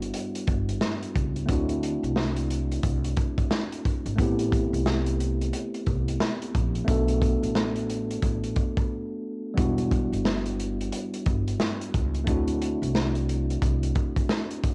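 A crunchy, gritty breakbeat kit with a tight kick and medium-tuned snare opens this tough, dark boom-bap hip-hop excerpt at 89 BPM alongside a clean tine electric piano, which sits up front with a tape-worn, filtered tone, and a woody pizzicato upright bass with saturated grit. The swung sixteenth-note groove cycles through Em7, D7, Am7 and Bm7, pausing for a brief break at 8.9 seconds before the progression returns. The bass drops out at 13.9 seconds, leaving the kit and piano in a small, lightly reverberant room with a homemade cassette character.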